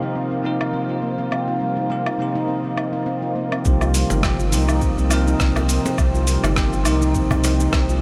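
Swung sixteenths at 103 BPM in 4/4 drive this earthy, dreamy organic downtempo excerpt in C minor pentatonic, where a ringing handpan arpeggio, a bell-like tine electric piano with subtle chorus and a gritty-sampled ethereal pad with sidechain pumping open over a Cm7 chord. A dusty, tape-warm soul drum kit of hi-hat, rim click, shaker and woodblock enters at 0.6 seconds, and at 3.7 seconds a round, dark analog bass with tube saturation and a deep electronic kick arrive, soon joined by a soft, woody cajon, all bathed in huge reverb across a low-pass-filtered mix.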